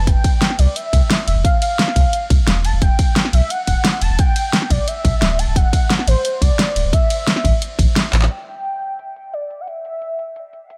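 A deep, round sine sub bass sits up front in this soulful, lush liquid drum and bass cut from a longer piece, beneath a velvety, mellow synth lead of detuned sawtooth and triangle tones with chorus, gritty 12-bit sampler texture, dub echo and portamento, while a punchy, layered electronic kick and an up-front electronic pop kit of fat snare, handclaps, hi-hat and ride cymbal, with the snare, hats and cymbals low-pass filtered, drive the drop over Fsus2, Em7 and Dsus2 chords until the kick drops out at 8.0 seconds, a drum fill lands at 8.1 seconds and the bass stops at 8.3 seconds, leaving the lead and kit to close over a chordless stretch in a dry mix.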